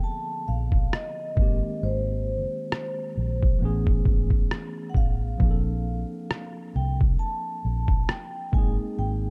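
A soft-mallet vibraphone with slow motor vibrato carries an airy, ringing melody over a worn, slightly out-of-tune tine electric piano from the start of this cosy, dreamy lo-fi hip hop passage in Bb major at 67 BPM with a swung feel, before a round, foam-muted electric bass enters up front at 0.5 seconds and a muffled, pitched-down sampler-style drum kit of thumpy kick and rim click follows at 0.7 seconds, all set in dark digital ambience over major-ninth chords.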